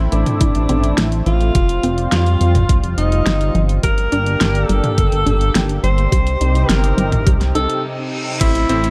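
Moody, nostalgic synthwave at 105 BPM in a dark production, where a lush, warbling detuned pad with chorus and sidechain pumping sustains chords over Am, Fsus2, Gm and Cm, a very quiet punchy pluck spins arpeggios, and an up-front glossy pulse-width bass pumps beneath a distant, mellow alto saxophone melody with vibrato, scooped notes and digital delay, while an overdriven pop drum kit with fat snare and crash is soon joined by a knocking electronic kick until a reverse cymbal lifts a brief break at 7.8 seconds and a bright, clangy electric grand piano stabs in at 8.4 seconds in this excerpt.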